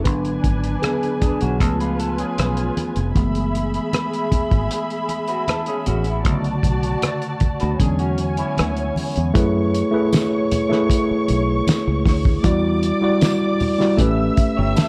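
Dark, lightly reverberant small-room production gives this fragment of lush 1970s-style soul a smooth, warm mood, carried by a worn, slightly out-of-tune tine electric piano that sits up front and takes a solo through the first 9.3 seconds. Beneath it, a muffled, gritty cloth-damped drum kit with a fat snare and tight kick, a punchy foam-muted fingered bass, and soft-handed, low-tuned congas hold a straight groove, while a veiled, distant muted string section adds bowed, vibrato-laden lines. A dark, slightly broken-up picked guitar riff enters at 1.2 seconds, and a jingly, compressed tambourine joins quietly in the background at 10.1 seconds as the chords move on.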